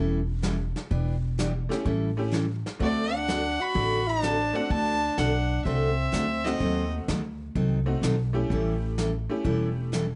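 A club room with moderate reverb and a rolled-off top frames this playful, down-home western swing excerpt at 126 BPM, swung in 4/4 and cut from a longer piece. A bright, full-bodied picked acoustic guitar and a woody pizzicato upright bass start together, brushed vintage drums with a punchy kick come in just after, and a metallic, jangly tack piano joins at 1.7 seconds. From 2.8 to 6.9 seconds a biting, nasal fiddle carries the melody up front while a raspy, growling tenor saxophone with scooped notes adds a second line below, over changes that move from A7 through D7 and a diminished chord back to A7.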